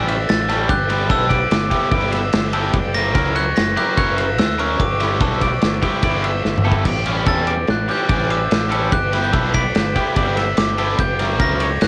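A bell-like glockenspiel struck with brass mallets carries a ringing, cassette-tinged melody over clean twangy guitar arpeggios, a double-tracked overdriven riff from a cranked stack guitar, punchy fuzz bass and a loose indie drum kit with dark cymbals and a pumping small-room sound that is also cassette-coloured and sits up front, all in a restless, intricate math rock and midwest emo piece at 146 BPM in 5/4, cut from a longer home recording with light reverb, moving through chords such as A7 with its third omitted, Em11/G and F#7b9, with a drum fill at 6.4 seconds.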